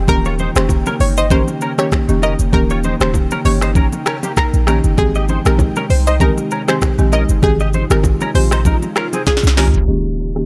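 Afrobeats excerpt with a romantic, breezy mood and a lightly swung groove. A knocking kick, sharp snare and smooth hats from an up-front electronic drum kit sit over a deep, boomy 808-style bass, while a buzzing, woody marimba, a twangy, direct-recorded electric guitar with chorus and delay, and a round sawtooth analog pluck carrying the melody move between Eb7 and Abmaj7. A breathy, mellow pad and ringing congas and bongos stay in the background of the dry mix, and a drum fill arrives at 9.3 seconds.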